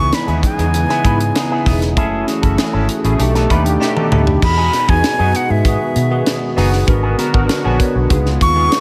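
Glossy and upbeat, this polished 1980s jazz-funk pop piece in E major moves at 98 BPM in a straight 4/4, with a breathy, close-miked silver concert flute carrying an expressive melody over bell-like tine electric piano with ensemble chorus, a shimmering chorused pulse-width pad sitting in the background, a twangy picked electric guitar riff through an envelope filter, a dark, round, foam-muted fingered bass and a tight, up-front funk drum kit with a high-tuned snare, while an electric piano fill from 3.2 s and a drum fill from 3.8 s lead into the second half at 4.4 s, all in a small room with light reverb.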